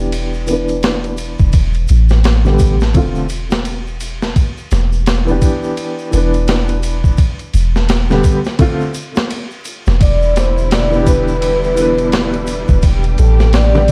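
A dark, dry mix with vinyl crackle frames this melancholic, cinematic trip hop fragment in E minor at 85 BPM, swung on the sixteenths. An intimate, woody upright piano with audible action noise carries the chords through tremolo, 12-bit sampler grit, tape echo and a filter sweep, over a deep, round 808-style bass, a compressed boom bap kit with a thumpy kick, high-tuned snare and ride, and a distant tube shaker in the background. At 10.0 seconds a pure, breathy sine lead with gliding portamento, lush chorus and tape echo enters alongside a rich, smoothly bowed string section with light vibrato.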